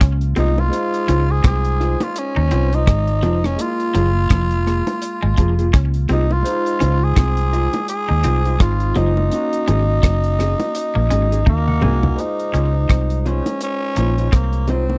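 A raspy, growling tenor saxophone carries the melody over a barky electric piano with overdrive and lush chorus, a twangy guitar riff with slapback echo sitting in the background, a round, foam-muted bass and a tight, damped 70s drum kit up front. Just after the start, dark, slightly broken-up guitar stabs and low-tuned bongos join this smooth, sweet lovers rock groove, cut from a longer piece, with the sax's tape echo set against a dry, close 1970s-style studio sound. An electric piano fill from 10.8 seconds and a drum fill from 11.5 seconds lead into a new section at 12.2 seconds.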